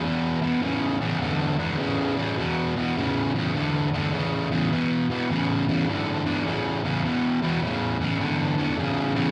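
Brooding and heavy, this short rock fragment cut from a longer piece features a lone fuzz guitar, bright, distorted, picked and double-tracked, sitting up front and compressed in the low register with a swung eighth-note feel over an E5 chord, heard live through a club PA with moderate club reverb for 9.3 seconds.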